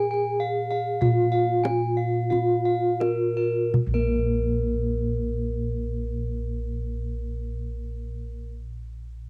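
A home cassette recording with a moderate room reverb gives this short cut from a longer Javanese gamelan piece a soft, intimate glow, and its mood is serene and shimmering. A bronze metallophone carries the melody with padded disc mallets, its mellow, dark tone further coloured by its own cassette-tape character and plate reverb, while its paired tuning produces gently shimmering beats. A second bronze metallophone, struck with a horn mallet, plays arpeggios higher up in a bright, ringing voice placed up front. Beneath them, bossed gongs supply the bass with a round, beating resonance from padded beaters, also sitting close to the listener. A kendang adds tight, close percussion played with soft hands until it stops at 4.4 seconds, and the music slows through the opening 3.7 seconds before a new section settles in.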